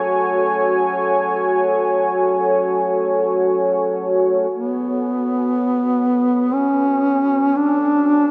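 Unsettling and cavernous, this short ambient fragment opens on a dark, detuned sawtooth pad with chorus holding sustained chords, until a mellow, folk-style duduk enters at 4.5 seconds with a vibrato-laden, scooped melody trailed by tape echo, both parts up front in a huge, wet reverb.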